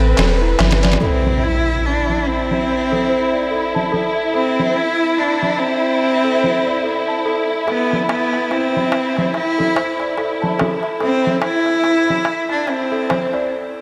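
A swung 72 BPM trip hop groove in 4/4 and A minor comes from a gritty, pitched-down sampler-style kit of hi-hat, ride and snare, all low-pass filtered, with a small clay darbuka in the background and a deep, round dub sub bass heard only in the opening break before an electronic impact lands at 1.0 s. Over it a rich, focused solo cello carries the melody through tape echo, a studio string section holds expressive sustained chords with vintage 12-bit sampler character, and a worn, bell-like celesta, slightly out of tune, plays filtered, echoing arpeggios until 13.8 s. The smoky, melancholic passage moves from Am9 to Am in a dreamy mix bathed in a long hall reverb, and it is cut from a longer piece.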